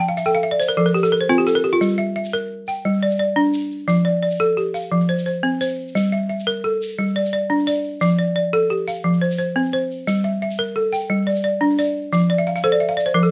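Close, detailed miking and light reverb put a woody, dry balafon up front, its buzzing, full tone struck with hard rubber mallets as it spins arpeggios between F3 and G5. This reflective, hypnotic slice of West African traditional string and xylophone music moves in 12/8 at 116 BPM in G dorian, swaying between F and G minor chords, with balafon fills opening the passage and returning at 12.3 seconds. A grainy, bright egg shaker enters at 0.2 seconds, sitting quietly and distant in a large room behind the mallets for the rest of this short excerpt.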